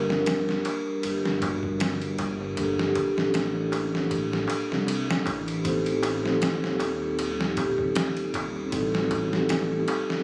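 Soft-mallet vibraphones open this brooding, hypnotic trip hop excerpt, one carrying a dark, smooth melody and the other a background accompaniment with tremolo, both ringing through tape echo, over a rumbling, detuned sawtooth bass, a gritty, pitched-down boom bap kit of thumpy kick, ride and snare entering up front at 0.1 seconds, and a deep, saturated clay darbuka, while the harmony moves from Gmadd9 to Am7b5 at 5.7 seconds in a small-room sound with a phone-in-the-room character.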